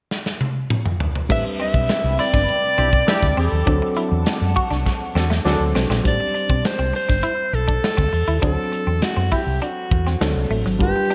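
Nocturnal and urban, this polished 1980s jazz-funk pop clip opens with a drum fill from the punchy, up-front studio kit, its bright cymbals and gated reverb setting the stage before a breathy, whispered alto saxophone takes the lead at 1.3 seconds over a round, amped fingered electric bass, a dark grand piano with audible action noise, and a clean semi-hollow electric guitar riff shimmering with analog chorus. A hollow, flute-like pad and distant, very quiet congas sit in the background until 6.0 seconds, while a mellow horn section with light vibrato and delay adds a brief second line, all over a rootless Am11 alternating with D7.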